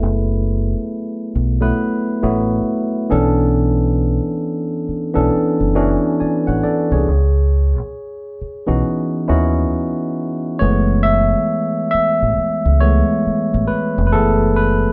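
R&B at a slow 68 BPM with a swung sixteenth-note feel in F# minor, this sultry, smooth cut from a longer piece pairs a barky, lightly overdriven tine electric piano through a combo amp with a deep, round, punchy fingered dub bass, both up front, as a band playing live in one small, wet room. Minor-eleventh chords move from F#m11 through Bm11 and C#m11, a brief break arrives at 9.7 seconds, and from 10.6 seconds the electric piano takes a solo over the return to F#m11.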